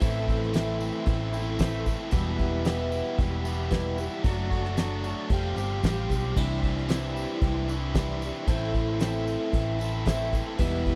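From its first beat, a folk-rock and heartland-rock band plays together at 113 BPM in a straight 4/4, with an open-road, nostalgic mood. A bright, shimmering twelve-string acoustic guitar carries the accompaniment with its octave-doubled picked strings, while a biting, overdriven electric guitar, double-tracked, drives a riff through the same range. Underneath, a dark, round hollow-body short-scale bass anchors the low end, and a brushed drum kit sits up front with a fat snare, punchy kick, hi-hat and crash in a small-room sound. A very quiet, flute-like tonewheel organ holds mellow sustained chords high above, colored by chorus vibrato and a slow rotary speaker, and a jingly tambourine stays in the background until 10.7 seconds. The harmony moves from Am through Em, D/F#, Fsus2 and Cadd9 before returning to Am, all captured in a dry, close 1970s-style studio sound in this short cut from a longer piece.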